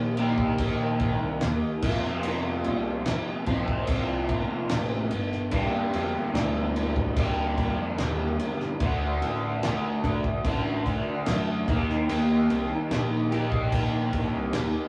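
Hypnotic and mysterious, this psychedelic rock fragment pairs a crunchy, double-tracked overdriven guitar riff with phaser, a round, punchy fuzz bass and a cloth-damped, thuddy drum kit with a fat snare and dark cymbals, all caught in the rough ambience of a small rehearsal room as the chords move from Eb through Fsus4, Gm and D back to Eb.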